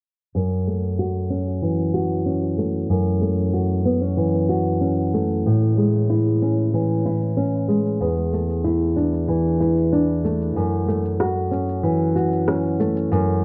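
A steady, straight 4/4 pulse at 94 BPM comes from an overdriven electronic shaker and rim click, produced and set back beneath the guitar from 0.4 seconds. This short folktronica passage in F# minor has an intimate, autumnal mood. A thumb-plucked nylon-string guitar sits up front, playing classical-toned arpeggios from E2 to F#4, softened by a low-pass filter and a tape echo. A filter sweep runs across the guitar and the whole mix for the full span, and the harmony moves from F#m7 to Amaj7, then E7sus4 at 8.0 seconds, and back to F#m7. A moderate studio reverb gives the acoustic guitar a close, gentle room around it, and the piece is cut from a longer work.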